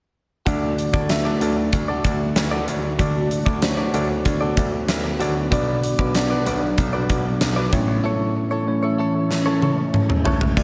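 Uplifting and romantic, this 1980s-style pop fragment in D major moves at 95 BPM in a straight 4/4, with a huge arena drum kit up front (punchy kick, fat snare, bright cymbals) carrying a fill from 9.3 seconds, a clean tine electric piano through a combo amp, a low grand piano with audible action noise playing the bass, a twangy direct-recorded electric guitar riff with subtle chorus and tape echo, and an ethereal detuned pad entering at 1.5 seconds, all set in a dreamy plate-reverb mix over D, Bm and A.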